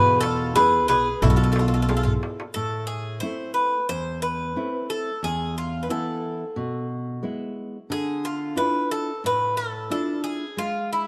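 A metallic, double-strung bouzouki carries a brooding, bittersweet Greek folk melody in A harmonic minor at 90 BPM over a full-bodied, fingerpicked nylon-string guitar, while a second bouzouki line, woody pizzicato upright bass and a crisp, deep darbuka in the background fall away by 2.6 s, the darbuka closing with a short fill, leaving bouzouki and guitar in moderate plate reverb as the chords move from E to Am, E and Dmadd9.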